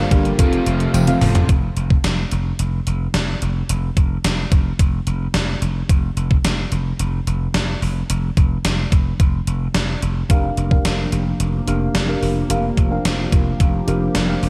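Up front, a thumpy, overdriven digital drum machine with gated-reverb snare drives this romantic, uplifting 1980s-style pop excerpt alongside a growly, punchy slap bass, while a crunchy double-tracked guitar, a brief very quiet tambourine, a swirling phased analog pad and a round, dark FM electric piano with a fill open the piece before the keys and pad drop out at 1.5 seconds and return over a Gm7/F chord at 10.3 seconds.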